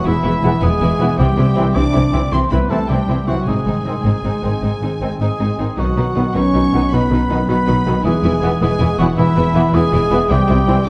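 Triumphant and adventurous, this cinematic orchestral passage, cut from a longer piece, moves in 12/8 at 106 BPM over chords of E, C, G#, B, E and C. Lush, focused violins carry the melody high above a distant solo oboe's second line, a softer background violin line, and tight, mellow French horns holding sustained chords, joined from 0.4 seconds by clear, roomy trombones further back. A very quiet, ringing harp plays thumb-plucked arpeggios, while smooth violas fill in the accompaniment and expressive cellos and rich double basses anchor the low end, all set in a wet recital hall.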